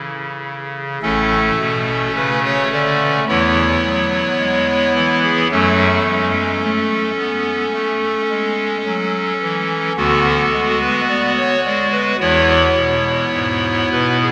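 The rhythm moves in a straight, unhurried 4/4, with chorale-like phrases that give this classical piece a majestic yet serene feel. A pipe organ plays solo throughout, voiced on a clarinet reed stop with a hollow, baroque character, a touch of chiff at the start of its notes and a tremulant. The part reaches from deep bass notes up into the upper middle register and sits up front in the mix. After a first second of unharmonised sound, the harmony settles through A, E and F#m before passing to Bm/D at 10.0 seconds and resting on E. A long cathedral reverb surrounds the organ in a church or concert hall acoustic, and the passage is cut from a longer piece, ending at 14.3 seconds.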